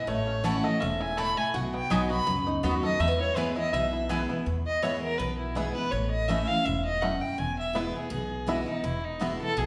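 Recorded in a church or concert hall with a wet recital-hall reverb, this short excerpt from a longer bluegrass piece in E major drives along at 164 BPM in a lively 4/4 swing. A single bowed fiddle with a reedy, gut-string tone carries the melody up front, taking a solo through the first 4.5 seconds, while a bright, full-bodied dreadnought guitar picks the accompaniment and a twangy banjo played with fingerpicks adds percussive arpeggios. A woody, dark pizzicato upright bass holds the low end, and a picked mandolin with double strings adds stabs from 0.4 to 4.2 seconds over chords moving through A, B and E.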